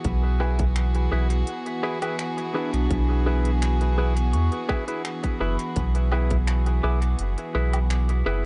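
A deep, meditative ambient dub excerpt at 84 BPM in B dorian opens on a Bm69 chord held by a rich, earthy chamber string section with light vibrato, over a round, up-front sine sub bass, a tight overdriven electronic kick that drops out at 6.4 seconds, and a faint overdriven kit of crisp hi-hat, finger snaps and woodblock steeped in dub echo; a clean, compressed hollow-body electric guitar adds echoing stabs from 0.4 seconds, and a twangy pedal steel slides in with background arpeggios at 2.5 seconds, in a dry, echo-heavy mix that tops out at 10.7 kHz.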